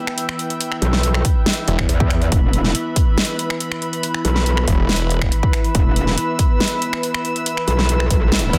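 A dense, heavily limited mix with light reverb carries this menacing, aggressive half-time wobble dubstep excerpt, where distant bowed chamber strings and a deep, moody pad, both pumping to the sidechain, float behind an up-front kit of finger snaps, metallic hats and a huge soft-clipped snare, a punchy electronic kick, a metallic FM wobble bass driven by distortion and chorus, brief bursts of a snarling, detuned sawtooth bass at 1.7, 4.7 and 8.5 seconds, and a reverse cymbal in the background at 8.5 seconds.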